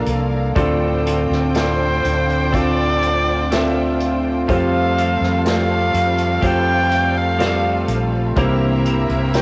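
Longing and heartbroken, this slow pop ballad in 4/4 is a short cut from a longer piece, with a hazy home-cassette character and the light reverb of a small room. A concert grand piano with deep bass and long sustain carries the accompaniment, while a mellow, round fretless electric bass sits up front beneath it. Behind them, a shimmering, retro pulse-width pad holds sustained chords with a slow attack, a bright, twangy twelve-string electric guitar picks clean arpeggios through a lush chorus, and a distant studio violin section adds an expressive second line. An acoustic drum kit, played with bundle sticks, enters at 0.1 seconds on hi-hat, a tight kick and a medium-tuned snare, sounding roomy and set back. At 1.6 seconds a solo erhu takes the melody up front, intimate and nasal, with an airy bow, light vibrato and gliding portamento over chords moving from Bbmaj7 and Dm7 to Fadd9 and C7.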